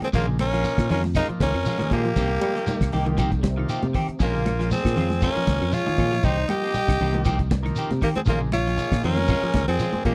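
Hypnotic and driving, this afrobeat excerpt rides a lightly swung 118 BPM groove in 4/4, cycling between Bbm7 and Cm7 in Bb dorian. A growling, raspy tenor saxophone carries the melody up front, with a clear trumpet holding a second line above it, while a mellow trombone section slips in underneath only between 2.4 and 4.4 seconds. In the background, a slightly broken-up electric guitar with ensemble chorus picks arpeggios, a clean electric guitar adds stabs, and a buzzy vintage combo organ with spring reverb fills in the accompaniment. The fingered electric bass sits solidly beside a damped 70s drum kit with a fat snare, tight kick and rolled-off top, while thick-skinned congas, a grainy, distant shekere and very quiet woody claves fill out the percussion. The sound is dry and close, in a 1970s studio style with little reverb.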